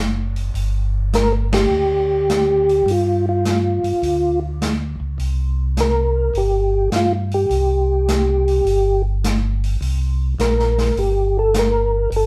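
Soul jazz organ trio in a smoky, bluesy swing, heard as a short cut from a longer piece with the band playing live together in one room under moderate studio reverb. A mellow, round tonewheel organ carries the bass line from the start with key click and a slow rotary speaker, and the open jazz drum kit comes in at 0.4 seconds with dark cymbals on hi-hat and ride and a medium-tuned snare. The melody organ enters at 1.2 seconds with a soft, flute-like, percussive tone coloured by chorus vibrato and slow rotary, sitting up front over chords moving from G5 to C5, and a band accent lands at 1.4 seconds.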